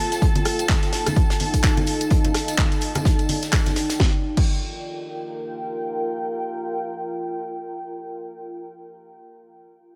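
A swung 16th-note groove at 127 BPM drives this energetic, soulful piano house excerpt in G minor, built on a punchy, up-front analog kick, a layered garage kit of cracking snare, bright hats, handclaps, rim clicks and crash, a fat-snared, mid-forward indie kit tucked in the background, and hard-hit, saturated tambourine and congas, while alongside them a distant, woody violin section holds vibrato chords with sidechain pumping and a deep, detuned sawtooth pad with chorus and a sub octave pumps along and carries on alone after 4.5 s, as an F7 gives way to Gm7 at 4.0 s.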